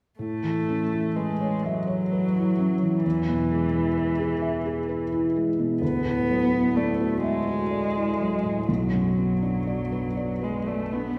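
Hopeful and tender, this neoclassical piano and strings fragment drifts at 42 BPM in a rubato 6/8, its uneven beats moving through A major from Aadd9 to E, Dadd9 and Bm. A felt-muted upright piano, intimate and dark with thick felt and audible action noise, carries the accompaniment up front, while a single muted cello, veiled and con sordino with vibrato, bows a close second line. The pair plays throughout the 11.2 seconds, bathed in the long, wet reverb of a church or concert hall.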